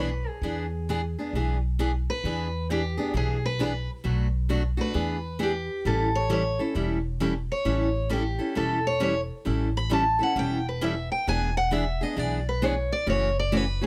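Playful and swinging, this brief passage of acoustic string swing in the jazz manouche style moves at 133 BPM in E mixolydian, cut from a longer piece and circling through E7, Bm7, A7 and F#m7. A picked steel-string acoustic guitar takes the melody as a solo throughout, its concert tone set in plate reverb, while a second picked steel-string guitar supplies accompaniment and a woody, thumpy pizzicato upright bass on gut strings anchors the low end. Close, detailed microphones and a light room reverb keep all three parts up front.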